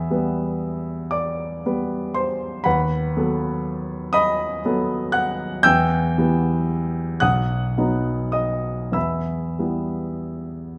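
A warm, polished baby grand piano sits up front in a wet recital hall reverb in this melancholic, mournful romantic nocturne excerpt in E minor, played solo with rubato in 6/8 at a slow 32-41 BPM, ranging from B1 to G6 as its harmony moves from Em through B7/D# and B before settling back on Em at 8.9 seconds.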